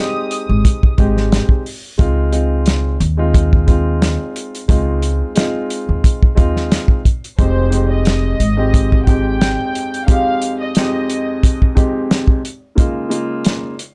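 Dry and dark, with little reverb, this gritty boom-bap hip-hop excerpt has a close, saturated feel and a lightly swung groove. A mellow baby grand piano carries the chords throughout, intimate and up front, its action noise audible beneath a worn cassette-tape character as the harmony moves from a rootless Fm9 to Dbmaj7 and later Fm7 and Db6. The soul drum kit sits loudest in the mix, with a tight kick, a medium-tuned snare and hi-hat, all rolled off at the top and pumping with room tone. A woody pizzicato upright bass on steel strings anchors the low end until it drops out at 9.6 seconds. A bowed violin section flickers briefly at the opening, then returns at 7.4 seconds with a soft-attacked, pure and floating melody touched with delay, adding a hazy lift to the brooding mood.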